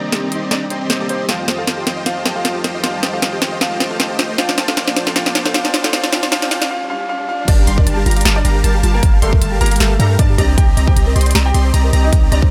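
Huge, detuned supersaw chords carry this bittersweet, dreamy future bass excerpt in a half-time swing, pumping under sidechain beside a clear, worn grand piano melody with tape echo, while glassy digital keys sound only briefly at the start and a rich chamber string section with light vibrato holds chords until 6.7 s. A trap kit with a sharp snare and bright hats builds through a fill as a very quiet riser and swell sit beneath, and a soft, round pluck arpeggio with chorus enters at 1.4 s. At 7.5 s the drop lands with a deep, boomy 808-style bass, a punchy, layered electronic kick up front, and a lush, phased unison pluck arpeggiating in the background of a lightly reverberant mix.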